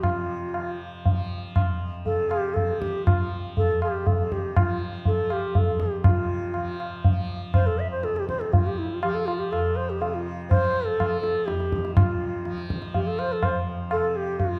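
Meditative and radiant, this fragment of a Hindustani classical performance in raga hamsadhwani moves in 3/4 and gradually speeds up across its 14.6 seconds. An airy bamboo bansuri carries the melody up front with vibrato and tongued notes, a high-tuned tabla with a short ring sits equally close, and a softly plucked tanpura sustains a buzzing, shimmering drone beneath. The dark production places the trio in a moderate recital hall reverb, and the music moves into a new section at 6.1 seconds.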